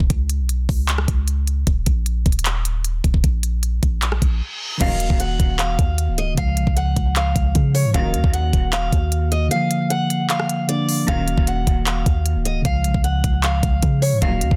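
A deep, boomy 808 bass with a knocking kick, crisp hi-hats, handclaps, rim clicks and crash cymbal sits up front in this brooding, eerie half-time trap excerpt at 153 BPM in Eb minor, opening as a drum-and-bass break before a reverse cymbal rises at 4.2 seconds. At 4.8 seconds a dark, boxy picked acoustic guitar carries the melody through tape echo over a mellow, clean tine electric piano, while soft-attack, floating bowed strings add brief echoing stabs. The kick drops out from 9.5 seconds for a short stretch in a dense, heavily limited, dry mix.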